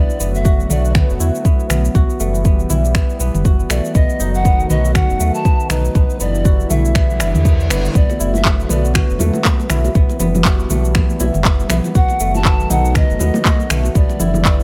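A swung, driving afro house groove sets the hypnotic pulse, with a deep, up-front electronic kick arriving at 0.5 seconds over a produced kit of finger snaps, handclaps, shaker and toms, while a round, dark analog bass pumps beneath. A smooth, detuned analog pad holds sustained chords with chorus, a crisp, ringing kora spins delayed arpeggios, and a breathy, hollow pan flute with vibrato carries the melody from a distance through digital delay. A reverse cymbal rises in the background at 7.1 seconds, and bright, high-tuned congas join from 8.1 seconds in this dry mix.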